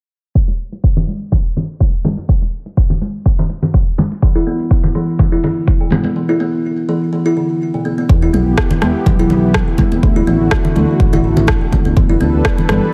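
A hypnotic, earthy afro house groove at 124 BPM in E minor opens at 0.4 s with a deep, tape-warm kick and thick-skinned congas struck with hard hands, both up front under a filter sweep that runs until 8.1 s and includes a short break from 6.2 s. A woody, ringing kalimba enters at 4.2 s on Bsus4, its mellow, airy arpeggios carried on digital delay and sidechain pumping. At 8.1 s a smooth, wave-folded sawtooth bass with portamento and tube saturation arrives, followed by a detuned, chorused analog pad at 8.4 s and a small-room rim click at 8.6 s, moving through Em, D69 and G in a dry mix that forms part of a longer piece.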